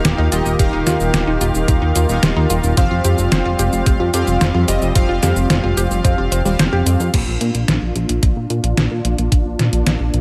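Light reverb and a faint mains hum frame this nostalgic, dreamy synthwave fragment, cut from a longer piece and set in a straight 4/4. A smooth, detuned sawtooth pad sits in the background with sustained, chorused chords that pump against the sidechain. Beside it, a lush unison pluck spins punchy arpeggios through digital delay. Bold, nasal analog synth brass stabs add vibrato and a filter sweep over harmony that moves from Ebadd9 to Fsus2. Up front, a glossy, mellow chorused synth bass blends pulse and sawtooth waves with tube saturation and sidechain pumping, while an overdriven, detuned 8-bit drum machine delivers snare, hi-hat, cabasa and crash with a small-room character, joined at 0.6 seconds by a thumpy electronic kick. The pluck drops out at 6.9 seconds and the brass at 7.1 seconds, as the music settles onto a Bb chord for a second section carried by pad, bass and drums.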